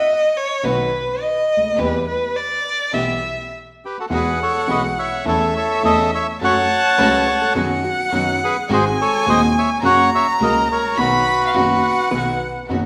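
This elegant, passionate tango in 4/4 moves at 105 BPM with a rubato feel, cut from a longer piece. A rich, bowed solo violin opens alone with vibrato, portamento and a soft attack, and is joined almost at once by an intimate concert grand piano, whose audible action noise and deep bass sit up front. Behind them, a very quiet chamber string section adds biting, earthy stabs with light vibrato and a smooth top. At 3.8 s the reedy, dark, mid-forward bandoneon takes the melody, just before the key brightens from E minor to E major. The violin carries on as a second line, and at 7.0 s a clean, compressed, picked hollow-body electric jazz guitar adds another one in the background. Recital hall reverb gives the ensemble a wet, resonant space.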